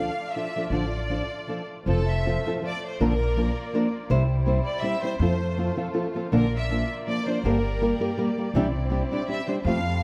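Set in a lilting 3/4 at 162 BPM with a light swing and a rubato give, this short cut from a longer mariachi piece in F major feels proud and festive. A rich, smooth violin section carries the melody from A4 to F5 with even vibrato, sitting distant in the mix, while a second section plays con sordino, holding dark, veiled sustained chords beneath it. Up front, a small fingerpicked nylon-string guitar supplies the accompaniment until 9.8 seconds, and a woody pizzicato upright bass anchors the low end between F1 and F2. The harmony opens on Dm, moves to F at 1.9 seconds, then circles through Bb, C, Gm and lands on Cadd9 at 8.5 seconds. A moderate recital hall reverb lends the ensemble a sense of space.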